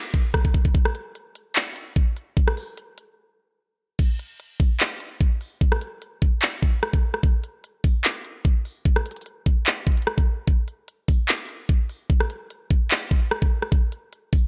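A trap drum kit carries this hard-hitting, eerie hip hop excerpt in a half-time feel, its electronic, produced sound built from a knocking kick, crisp hi-hats, handclaps, rim clicks and crash cymbal, all mixed up front in a digital ambience. The kit plays from 0.1 seconds, a short break arrives at 3.2 seconds, and at 4.0 seconds a longer new section opens and carries through to the end.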